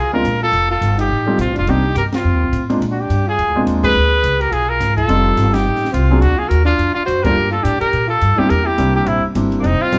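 Swinging and sophisticated, this small-group swing and bop excerpt in F mixolydian moves at a brisk 211 BPM, with a clear, punchy trumpet with light vibrato and scooped notes carrying the melody up front, a breathy, whispered alto saxophone adding an intimate second line, a woody pizzicato upright bass anchoring the low end, a warm baby grand piano accompanying from 0.1 s, and a dark, smooth cocktail drum kit with a high-tuned snare entering at 0.2 s beneath band accents at 2.1, 3.8, 5.5 and 7.2 s, all captured live in one room with a large studio reverb.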